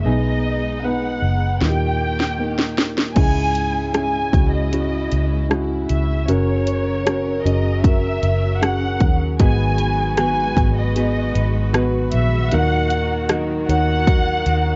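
Heartbroken and emotional, this pop ballad fragment opens on a dark, woody upright piano with audible action noise and a lush violin section singing the melody with expressive portamento, over a round, foam-muted electric bass and a close string section holding sustained chords in the background. At 1.6 seconds a drum fill brings in an up-front, overdriven electronic kit with punchy kick, cracking snare and bright hats. From 9.4 seconds a clean, direct-recorded electric guitar adds arpeggios colored by analog chorus, tape echo and plate reverb, all under a dulled cassette-tape sheen.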